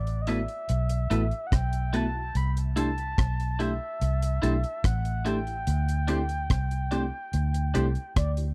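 Longing and bittersweet, this brief lovers rock reggae excerpt at 72 BPM pairs a reedy, woody FM lead with chorus and tape echo over a dark, round, foam-muted electric bass and a dry reggae drum kit of hi-hat, tight kick and rim click, while a soft, full-bodied FM electric piano with chorus and a bright, twangy, clean electric guitar adding stabs both enter at 0.3 seconds, all moving through B7sus4, C6 and D7sus4 in a close, dry 1970s-style studio sound.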